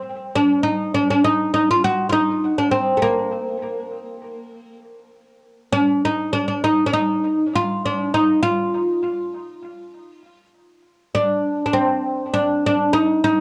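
Worn, warbling cassette tape colors this recording, its pitch drifting over a moderate studio ambience with a short room tail. This is a hypnotic, soulful Turkish piece in 9/8 with a straight feel, cut from a longer performance. A lone acoustic oud carries everything from 0.4 s to 13.4 s, its fretless, plectrum-plucked double strings sounding woody and deep, placed up front in the mix. An analog delay trails the oud's notes. The playing stays in a compact middle register. Around 11.1 s the music moves into a new section before the recording ends.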